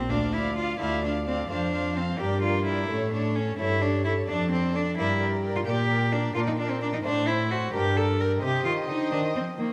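A close, reedy solo cello carries the melody from the first moment over a gut-strung lute, fingerpicked and delicate in the background, and a nasal, up-front cello section on the bass line, with period-style violin and viola sections joining almost at once in this stormy, dramatic baroque-style concerto passage in 6/8 at 86 BPM in dotted quarters. One violin section adds a very quiet high melody while another plays a rich, smooth-topped second line, and the dark violas sit distant in the background, all ringing in a moderate recital hall. The music starts in D minor and turns to G minor at 5.7 seconds before this fragment, cut from a longer piece, ends on a C minor chord.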